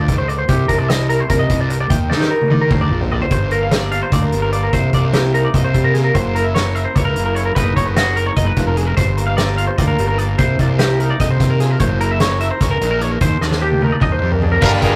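In a brisk, straight 7/8 at 297 BPM counted in eighths, this bright, wistful math rock and midwest emo passage in Eb major sets bright, clean twelve-string electric guitar arpeggios and a fuzz-overdriven fingered electric bass up front over a roomy, loose indie drum kit with a fat snare and punchy kick. Meanwhile, a scooped, twangy electric guitar plays accompaniment in the background through chords such as Cm9, Gm7, Gb7 and Bmaj9/F#. Drum fills come at 2.1 and 13.4 seconds before a clear, lightly vibratoed trumpet melody and a double-tracked, cranked stack guitar riff arrive at 14.6 seconds, all in a rough rehearsal-room recording with tube saturation.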